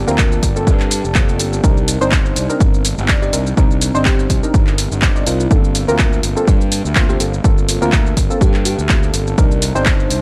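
A short cut from a longer deep house track opens on mellow, sawtooth analog keys playing stabs with chorus, analog delay and sidechain pumping, over an overdriven fingered electric bass with a dark, round fuzz tone that pumps along with them. Alongside them sits a very quiet, moody ambient pad, full-bodied and detuned with a sub octave, slow attack, long release and its own built-in reverb. Within moments a punchy, up-front electronic kick and a tape-warm analog drum machine with handclaps, hi-hat and shaker set a smooth 124 BPM groove in 4/4 with a light 16th-note swing, their sound re-recorded in a large room. At 3.2 seconds a bell-like FM electric piano enters in the background, sparkling with chorus, tremolo and analog delay, and plays until 9.1 seconds. The harmony in C dorian moves between Gm11 and Cm9, and the overall mix is dry, giving a smooth, warm feel.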